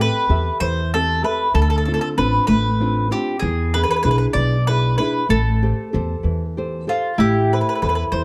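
A close, detailed recording with light reverb frames this short, wistful and passionate Italian serenade, cut from a longer piece. It sways in 6/8 at 64 dotted-quarter beats per minute in A minor, moving through Am7, Dm7 and E7 before settling back on Am7. A round, picked mandolin with doubled strings sits up front and carries the melody between F4 and D5, while a small-sounding nylon-string guitar fingerpicks the accompaniment beneath it. An upright bass, pizzicato on steel strings, adds a woody low end that also sits forward in the mix. At 7.2 seconds a second, mellower mandolin enters softly on a picked E4 line, lending a last touch of color before the cut at 8.2 seconds.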